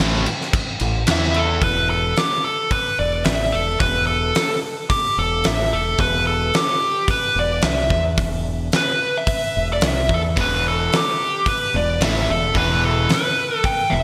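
A bright 1980s-style digital production in a lush hall reverb carries this driving, menacing hard rock excerpt in E minor at 110 BPM, where a punchy, big-room drum kit with gated reverb and a growling, overdriven fingered bass drive the groove, a double-tracked hollow-body guitar with lush chorus plays the riff at 0.0 and returns at 10.4 seconds, and a nasal lead guitar with a parked wah, overdrive and digital delay sits up front on the melody from 1.1 seconds over chords moving from A5 to E5.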